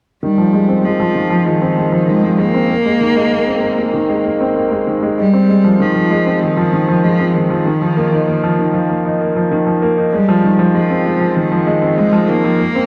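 From 0.2 seconds a bright upright piano riff, woody and intimate with audible action noise and a long sustain, moves through a low-pass filter sweep and tape echo while a single bowed cello sings a rich, focused melody with vibrato over Fm7, Abadd9 and Bbsus4 chords, all set in huge ambient reverb for a dark, cinematic and moving electronica piece.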